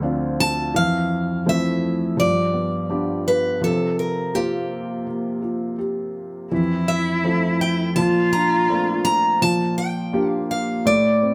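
An intimate, heartfelt acoustic folk-pop ballad at 83 BPM in F major, cut from a longer piece, where a bright, up-front picked steel-string acoustic guitar carries the melody from 0.4 seconds over a clear concert grand piano with deep bass and long sustain and a mellow felt-muted upright piano playing arpeggios with audible action noise, while a dark, woody bowed cello with vibrato adds a distant second line from 6.5 to 9.4 seconds, all set in a moderate studio reverb as chords such as Fmaj7 and Bbmaj9 pass by.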